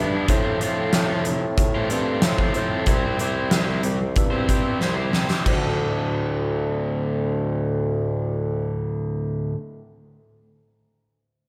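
A huge arena drum kit with a fat snare and punchy kick drives this cathartic, restless quiet-loud alternative rock excerpt at 93 BPM, up front beside a bright, overdriven semi-hollow guitar riff, while a dark, lo-fi, slightly broken-up electric guitar through a small old amp picks phaser-treated arpeggios in the background and a mellow, smooth-topped bassoon carries the bass over F and C, with the drums playing a fill at 4.8 seconds before stopping at 5.6 seconds as the harmony moves to D, in a lush hall reverb with a grand, spacious sound.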